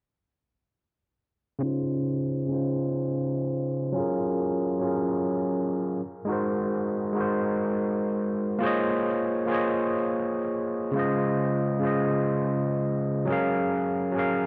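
A gritty, barky overdriven tine electric piano, played through a combo amp and sitting up front, enters at 1.6 seconds with blissful chillout chords in Db major at 103 BPM, moving through Dbmaj7, Gbmaj7, Ab7 and Bbm11 under tape echo and filter sweeps before returning to Dbmaj7 and Gbmaj7 at 11.0 seconds, all wrapped in a lush hall reverb until this excerpt breaks off at 14.5 seconds.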